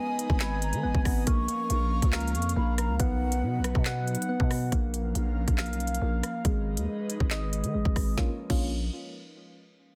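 Hip hop drill in a half-time feel, tense and cold, this short cut opens with a hollow silver concert flute carrying a second line with vibrato and digital delay until 3.8 seconds. Beneath it, round electric-piano-like synth keys play arpeggios through chorus and delay, and an airy, breathy pad holds sustained chords. Up front, an electronic drill kit with a hard-clipped kick, woody snare, crisp hats, crash, handclaps and rim clicks plays alongside a growling, buzzy 808-style bass; a filter sweep runs from 4.7 to 8.2 seconds, all within a digital ambience and a dense, heavily limited modern master.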